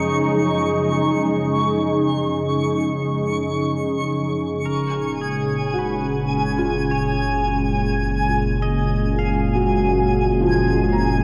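An ambient excerpt in F# major at a slow 53 BPM opens on a smooth, detuned sawtooth pad with chorus holding an F#maj9 chord up front, while a twinkling granular texture with octave-up shimmer sparkles high above it, all bathed in a huge, wet reverb and the warbling pitch drift of worn cassette tape. At 4.6 seconds a deep, round sine sub bass arrives, joined at once by a clean pedal steel guitar playing a background melody with slide, volume swells and tape echo. From 5.7 seconds a felt-muted upright piano adds intimate, mellow arpeggios with audible action noise, deepening the luminous, serene mood.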